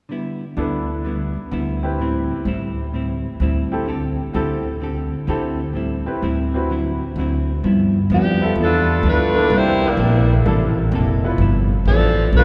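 Big band swing jazz at 128 BPM, this joyful, swinging fragment sits in G mixolydian and moves with a strong swung feel from its first beat. A clean, dark hollow-body electric guitar opens the accompaniment, joined at 0.6 seconds by a brilliant, polished upright piano and a growly, woody pizzicato upright bass that sits up front on steel strings. The harmony travels through sus and extended dominant colours before settling into rich thirteenth chords in the second half. At 8.1 seconds a vintage saxophone section takes the melody, its dusky ensemble tone carrying a light vibrato close to the listener. A cavernous cathedral reverb gives the recording the spacious air of a church or concert hall, and the piece is cut from a longer performance.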